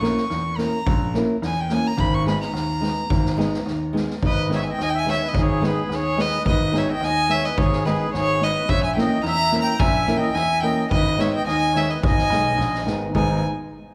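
A straight 2/4 pulse at 108 BPM drives this fiery, virtuosic Balkan wedding-band excerpt in G# harmonic minor. The violin leads up front with a floating, sul tasto tone and soft attack, featured in a solo passage through 4.2 seconds. It is backed by dark, fingerpicked nylon-string guitar, a polished grand piano carrying the deep bass line, and a small street-band kit with a high-tuned snare and boomy kick. At 4.3 seconds a reedy accordion with light tremolo tuning enters on a sweet second line, all set in the moderate reverb of a church or concert hall.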